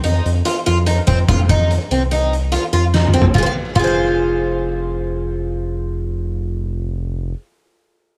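Tense and brooding, this short progressive instrumental passage cut from a longer piece moves at 145 BPM in 5/4 in F minor, with a shimmering twelve-string acoustic guitar picking arpeggios through tape echo up front and a round, detuned analog bass sitting deep beneath it. An oversized low-tuned drum kit with a fat snare and punchy kick, gritty and saturated in a bright stone room, plays until 3.9 s, its fill from 2.9 s leading the harmony from F7(no3) to Fm at 3.3 s. The guitar carries on to the end at 7.5 s, and the cassette home recording adds light reverb and small room ambience.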